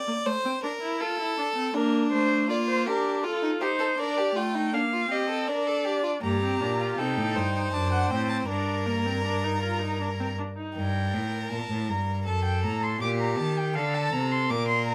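A light reverb surrounds this baroque-style fugue for string quartet, cut from a longer piece, with a joyful yet stately mood at a steady 80 BPM in 3/4. One violin opens on the second line, its clear, even tone sitting close and up front with smooth vibrato, while a distant viola joins almost at once with a rich, expressive accompaniment coloured by vibrato and portamento. At 1.8 seconds a second violin takes the melody, singing warmly above the others with expressive vibrato and sliding portamento as the harmony moves through Bb major. At 6.2 seconds the music turns to G minor and a cello enters on the bass, focused and smooth at the top, placed up front with its own vibrato. The viola drops out at 10.8 seconds, and the two violins and cello carry the closing passage toward a final G minor chord.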